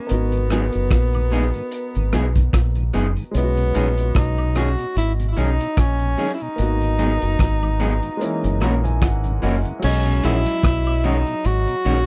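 A warm tenor saxophone with vibrato carries the tender, sweet melody of this lovers rock reggae excerpt at 74 BPM in B major, swung on the sixteenths. A clear, long-sustaining grand piano sits behind it and takes a fill from 8.2 to 9.8 seconds, with tape echo on both saxophone and piano. A deep, round dub bass sits up front beneath a crunchy, gritty breakbeat kit of punchy kick, hi-hat, rim click and dark crash cymbal, while a mellow tonewheel organ turns through a slow rotary speaker in the background, a slightly broken-up, lo-fi electric guitar adds stabs, and tambourine and woodblock sit quietly at the back of a dry, close 1970s-style studio sound.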